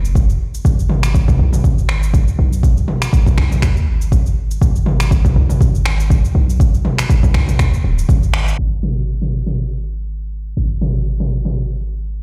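An earthy, hypnotic afro house excerpt opens with a deep, boomy 808-style bass pumping up front against a layered, overdriven deep house kit of cabasa, finger snaps, toms and crash, while an electronic kick pounds until 8.2 seconds, a band accent hits at 8.3 seconds, and a filter sweep carries the closing stretch from 8.6 seconds to 12.2 seconds through a low-passed sound with large studio reverb.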